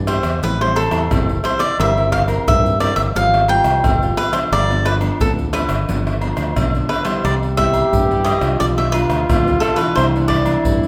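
A crisp, picked cavaquinho carries the melody up front in this sunny, lively samba-and-choro excerpt at 88 BPM in C major, over classical-style fingerpicked nylon-string guitar, a bright electric bass shaped by an envelope filter, and a percussion bed of agogo bells, egg shaker, pandeiro, tamborim and deep surdo, with a dark, breathy trombone entering at 7.2 seconds to add a jazz-style second line of scooped notes, all set in a moderate large-studio reverb.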